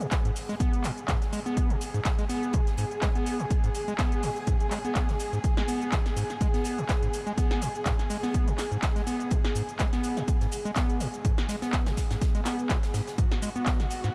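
A squelchy, gritty overdriven acid bass riff with resonant filter sweeps, sidechain pumping and a diffuse delay leads this trippy, hypnotic acid house excerpt in G# minor at 124 BPM with a light 16th-note swing, over a punchy, tape-warm electronic kick, an analog electro drum machine with metallic hats, handclaps, shaker and a punchy snare in a short room, a very quiet, dry funk kit with a high-tuned snare, and dark, bowed chamber strings holding sustained vibrato chords that also pump, in a dreamy mix soaked in huge reverb.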